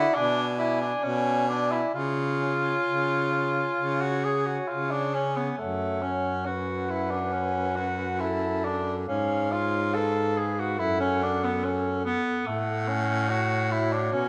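Solemn and elegiac, this lyrical classical passage for single-reed quartet moves with a rubato feel, cut from a longer piece and set in a moderately reverberant recital hall. A warm clarinet carries the melody in the background above a mellow alto saxophone with vibrato on the second line, while a clear, distant and roomy tenor saxophone with light vibrato sits up front as accompaniment. A punchy, close-miked baritone saxophone, also with light vibrato, anchors the bass through a brooding minor-key progression that settles onto F#m at 10.8 seconds.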